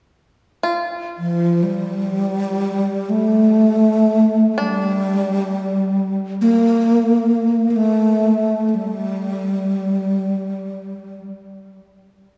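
Floating in free time, this short, spacious excerpt of meditative world music sets a quiet, twangy, fingerpicked bluegrass banjo texture low in the background from 0.6 seconds, while a breathy, mellow bass flute enters at 1.2 seconds up front and close-miked, carrying an unsteady, tongued melody with vibrato and an analog delay until 11.2 seconds, all tuned to A4 = 435 Hz in a dreamy mix soaked in lush hall reverb with a touch of small-room ambience.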